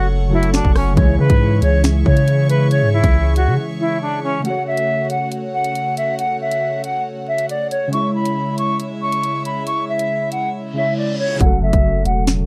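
A dark, crackling production with light reverb frames this cold, ominous half-time drill fragment, where an airy, distant-sounding concert flute with slapback echo carries the melody over detuned, warbling lo-fi synth keys and a soft, earthy bed of bowed chamber strings. Up front, an electronic drill kit of hard-clipped kick, sharp snare, bright hats, rim clicks and finger snaps drives the beat beside a deep sine 808 bass. The bass falls away at 3.6 s and returns at 11.4 s, just after a reverse cymbal rises in at 10.7 s.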